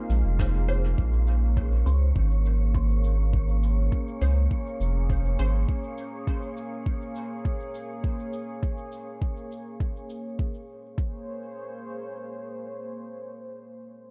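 An echo-heavy, hazy mix frames this deep ambient dub fragment, cut from a longer piece, as a moody, detuned sawtooth pad holds sustained chords through chorus and reverb while an airy, breathy wind-like noise texture drifts above until 10.4 seconds. A ringing stainless steel handpan plays brief meditative arpeggios through dub echo in the opening moments, and a round, dark analog bass sits up front beside a soft, overdriven electronic kick, with cabasa and brushed rim click echoing faintly behind. Muted, filter-plucked dub chord stabs with phaser and ensemble chorus flicker in the background until 5.5 seconds, and the pad plays alone once the kick stops at 11.2 seconds.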